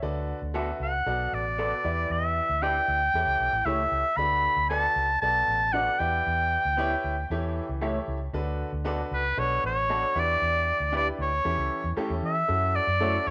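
A clear grand piano with long sustain and a round, foam-muted vintage electric bass open this danceable soul excerpt in D major at 116 BPM, cycling through D6, Bm7, Em7 and A7 chords in a straight 4/4 feel. From 0.5 seconds a dark, slightly broken-up electric guitar through a small old amp adds compressed, lo-fi stabs with a phaser, sitting in the background. At 0.8 seconds a warm oboe takes the solo melody up front, classical in style with light vibrato and a smooth top, all within a small room's light reverb.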